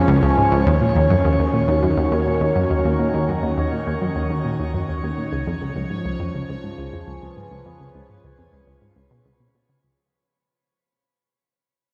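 Ambient, sequencer-driven space music with an expansive, mysterious mood, moving from Db7 to Ebm7 and back. A bright, wave-folded resonant pad with chorus and phaser sits up front beside a round, detuned analog pluck riff carrying chorus and delay, while a bubbling stepped-filter texture with built-in reverb drifts high above and a fat, saturated bass enters very quietly at 0.7 seconds. The dark production is bathed in a long shimmer reverb, with a filter sweep on the arpeggiated synth and a fade-out running from 0.7 seconds to the end of this excerpt.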